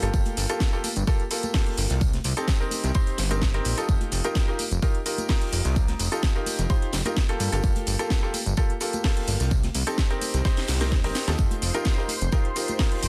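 A dense, heavily limited mix with little reverb carries this feel-good, uplifting piano house excerpt at 128 BPM in F mixolydian, built on a clear, worn grand piano riff with digital delay and a fat, detuned sawtooth analog bass, both pumping against a punchy, up-front electronic kick. A house kit with cracking snare and metallic hats sits over a very quiet, dry 70s acoustic kit and faint, bright tambourine and congas, with a drum fill at 10.4 seconds. At 11.4 seconds a silky, string-like analog pad with ensemble chorus, vibrato and 12-bit sampler grit enters on the F9sus4, closing out the Gm9, Cm7 and F9sus4 progression.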